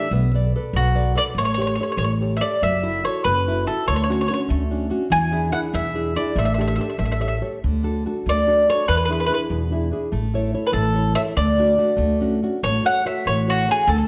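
A picked mandolin with doubled strings carries the melody up front, its woody tone warm and romantic over a full-bodied, fingerpicked nylon-string guitar whose deep classical sound catches the odd finger squeak. An up-front upright bass plucks a thumpy pizzicato line beneath them in this sunny Italian serenade in D major, flowing in a rubato 6/8 at 96 BPM. The trio sits in a moderate recital-hall reverb, and this short cut from a longer piece ends as a new section begins at 12.6 seconds.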